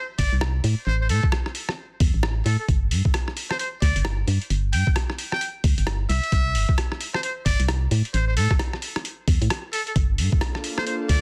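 UK garage in a two-step style, this moody, late-night excerpt from a longer piece rides a swung groove and a harmony that drifts through C and A before settling on Gm7. A trumpet with a metal mute carries the melody from the very start, sounding buzzy, thin and brilliant, with light vibrato, a soft attack and a jazz-style solo voice colored by delay. At 0.2 seconds a dark, hollow, organ-like FM bass enters up front, with percussive notes that have a fast attack and then decay, alongside a thumpy electronic kick and a sampler-style kit of hi-hat and rim click. Both drum parts are gritty, compressed, pitched down and tape-warm, and the snare carries soft clipping. At 10.2 seconds an airy, breathy pad slips in with detuned chords, a slow attack, chorus and sidechain pumping. The mix is dry, with a dense, heavily limited modern master.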